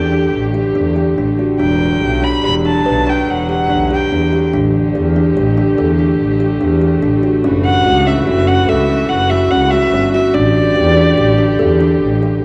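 This excerpt of contemporary chamber music opens with all four parts at once: a woody, ringing kalimba plucks arpeggios while a bowed double bass, a studio string section and a solo violin enter together. Set in A mixolydian at 144 BPM in an uneven 7/4 with a straight feel, the piece has a shimmering, restless mood. The violin carries the melody up front, intimate and close, played sul tasto with an airy bow, a soft attack and light vibrato, and it stops at 12.0 seconds. Beneath it, the string section holds sustained chords with a clear, biting edge, while the double bass anchors the low end with an earthy, nasal, boxy tone from a single bowed player. The harmony moves between A7sus4, Em9 and F#m7, returning to A7sus4 at 10.3 seconds. The whole mix sits in a wet recital hall reverb and carries the worn, warbling pitch drift of old cassette tape.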